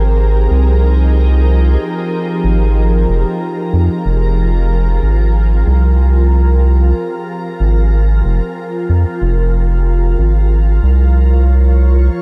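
Spacious and hazy, this ambient dub excerpt moves at 93 BPM in 4/4 with a light 16th-note swing in F minor, as a calm, pure organ-like pad sustains slow-blooming chords from Fm11 to Bbm/F at 9.2 seconds, its bright tone softened by ensemble chorus and its own reverb, while a round, deep analog bass sits dark and up front beneath it in a dry room.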